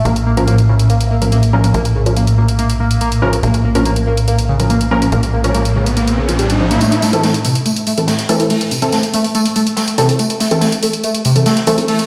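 A gritty, screaming overdriven synth lead carries the riff through this relentless, driving peak-time techno excerpt at 142 BPM, its distortion, phaser and dub echo set over a tight sequencer bass, a swarming drone and aggressive, detuned rave stabs that get a filter sweep in the opening half. An electronic hi-hat runs throughout, and a riser builds from 4.8 seconds before bass and drone drop out at 6.8 seconds, where the harmony shifts from Bb minor to A minor and an open jazz drum kit with a high-tuned snare and tambourine joins the build-up as the lead is swept through a filter. The mix sounds like a big sound system playing in a bare stone room.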